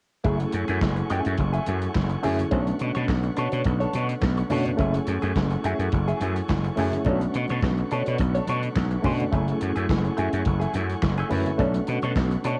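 A steady, driving disco groove in straight 4/4 at 106 BPM, this danceable excerpt sits in B dorian and alternates between F#m9 and Bm9 chords every couple of seconds. The soul drum kit is dark and rolled-off at the top, with a punchy kick, medium-tuned snare, hi-hat and handclaps, while very quiet congas with a thick-skinned, hard-handed tone sit beneath it. Up front, a gritty slap bass growls with overdrive, punchy and bright, ranging from F#1 to B2. A clean, twangy electric guitar recorded direct plays compressed picked accompaniment through a wah, and a barky, reedy electric piano with light overdrive and fast tremolo sits further back. A smooth tonewheel organ holds sustained chords in the background through a fast rotary speaker, its key click audible, and the whole excerpt carries the small-room, cassette-tape character of a home recording.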